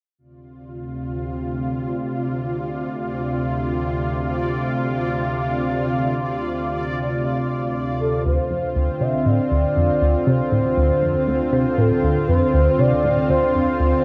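A straight 4/4 pulse at 119 BPM carries this excerpt of ambient, sequencer-driven space music in D minor, expansive and mysterious in mood. Over a Dm7, a bubbling, resonant texture of random filter steps fades in from 0.2 seconds, bright yet set in the background with its own reverb and chorus, while a lush, thick unison pad of detuned sawtooths swells in slowly to hold sustained chords up front. At 8.3 seconds the second section brings a tight, driving sequenced riff of detuned sawtooth and square waves with a plucky filter, colored by chorus, phaser and delay. An expressive, dark lead sings a smooth melody with vibrato, chorus and delay, and a round, deep, wave-folded bass sits very quietly on a low D. A wet plate reverb bathes the mix, and the worn cassette-tape sound adds a warbly pitch drift.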